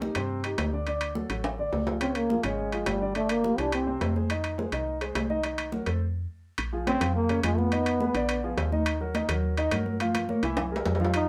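A fast, straight 4/4 groove at 210 BPM drives this sultry, fiery Afro-Cuban jazz excerpt, with bright, thin-skinned congas sitting in the background under soft hands while close, dry timbales add a ringing metal-shell edge. A woody FM bass with a round, fast-attack tone anchors the low end, and a dark, mellow concert grand piano plays up front as accompaniment, its deep bass register giving the harmony weight. A warm trombone carries the melody as an up-front jazz solo, entering at 2.0 s with vibrato, a soft attack and a smooth top, and returning in short phrases. After a drum fill and a brief stop, the music settles into Bb minor at 6.6 s, moving through darker, tense chords such as Bbm9, Bb7b9 and Caug7 before another fill at 10.0 s. A club ambience with a short decay places the ensemble further back in the room.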